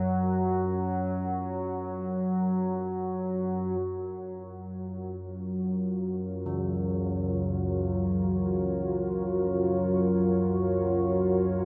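A huge, wet reverb hangs over this unsettling, desolate dark ambient drone in free time and F# major, cut from a longer piece, where a warbling, vintage analog drone sits up front with chorus beneath a deep, detuned pad of sustained F#5 chords with its own built-in reverb, and at 6.5 seconds bronze carillon bells join with delayed, ringing arpeggios on C#3.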